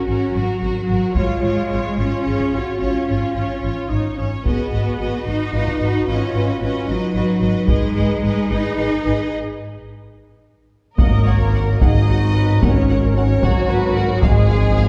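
Cinematic, epic orchestral film score in a heroic mood, moving at 73 BPM in 6/8 with lush, vibrato-laden violins carrying the melody over a more distant second violin line, smooth viola accompaniment, and distant, roomy French horns holding sustained chords. Focused cellos and expressive double basses anchor the bass while a taiko ensemble, played with heavy sticks, enters at 1.2 seconds. Very quiet, tight trombones and a mellow tuba join at 11.0 seconds, with the whole orchestra tuned to A4 = 437 Hz and heard from further back in a reverberant concert hall.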